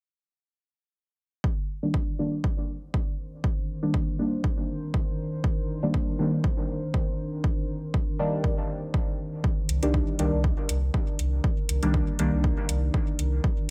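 This hazy, nocturnal dub techno excerpt opens at 1.4 seconds with a punchy, overdriven electronic kick sitting up front, joined moments later by a deep, mellow chord stab whose detuned, warbling tone is coloured by chorus, phaser, dub echo and sidechain pumping while a filter sweep moves across it. From 3.2 seconds a moody, slow-blooming ambient pad settles in underneath, its sustained chords softened by chorus and built-in reverb and gently pumping in the background. The harmony rests on a single minor ninth chord, and the groove carries a light swing on the sixteenths. The second section begins at 9.4 seconds, and at 9.7 seconds a round, soft sub bass holding one low note arrives along with metallic, overdriven hi-hats, thickening the pulse. The whole passage sits in a digital ambience that lends it a shadowy, late-night depth.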